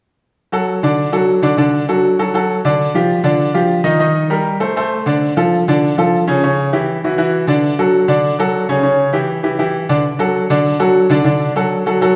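A brilliant, vintage-toned grand piano carries this joyful, festive Latin fragment on its own, playing from 0.5 to 12.2 s in a straight 4/4 feel with a bright, up-front presence and long sustain. The harmony moves from D through colourful turns such as Amadd11, Dmmaj7 and C#dim before settling back on D at 10.0 s. A lush recital-hall reverb gives the piano a spacious church or concert-hall setting.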